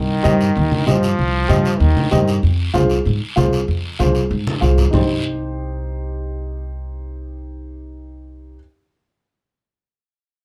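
Latin cumbia with a fiery, driving feel, heard as a short cut from a longer piece in a straight 4/4. A brilliant, punchy trombone with vibrato opens the passage on a forceful second line, stopping at 2.4 seconds as the harmony moves from C minor to F minor. Underneath, a woody, thumpy pizzicato upright bass on gut strings sits up front and carries the low end throughout, while a dark, mellow upright piano, slightly detuned and intimate with audible action noise, comps alongside it. Low-tuned congas with a thick-skinned, distant tone and a raspy, saturated guiro drive the percussion until 5.0 seconds, just after a drum fill at 4.5 seconds leads the music back to C minor. The whole production is dark and warm, set in a moderate small room.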